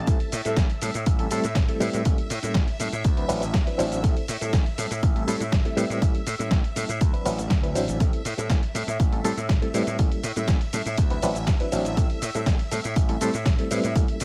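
Filtered disco house at 121 BPM in A dorian, sensual and groovy, this excerpt from a longer piece stays in its drop throughout, with a punchy, overdriven electronic kick up front, a dusty sampler-style kit of hi-hat, shaker and gritty snare whose hats and percussion pump under the sidechain, an overdriven slap bass, a reedy electric piano with fast tremolo and phaser, and a swirling vintage string machine sustaining chorused, phased chords in the background, the bass, piano and strings all under a low-pass filter, as Am7 moves through A7b9 and D13.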